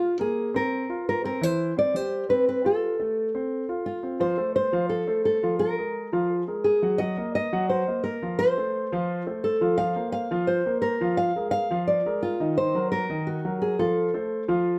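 A straight 4/4 pulse drives this brisk, sultry Latin fragment, cut from a longer piece. A thumb-plucked nylon-string guitar carries the melody in a classical style, its acoustic tone sitting up front. Beside it, a warm concert grand piano spins arpeggios with a deep bass, equally close and present, and the two parts play together from 0.0 to 14.8 seconds. The harmony moves through suspended and major chords on F, then darkens with Bb and Eb minor colours before settling back on F. A moderate studio reverb lends the pair a gentle sense of room, keeping the mood warm and intimate.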